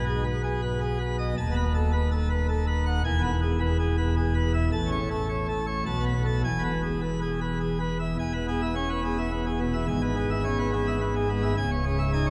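In a straight 3/4 at 107 BPM, this dramatic, stormy organ toccata in E major is cut from a longer piece and tuned to A4 = 435 Hz. A solo pipe organ plays a full plenum with mixtures, spanning C#1 to A5 in a brilliant baroque voicing whose pipes speak with a distinct chiff. The organ sits up front, but a cathedral reverb with a 4.8-second decay pours around it, and the overall production leans dark and warm. The harmony opens on G#m/B and moves through B7/D# to E, then A and Asus2/B before settling back on E. At 8.2 seconds a second section begins, passing through E/G# and landing on C#m as the recording cuts off at 12.3 seconds.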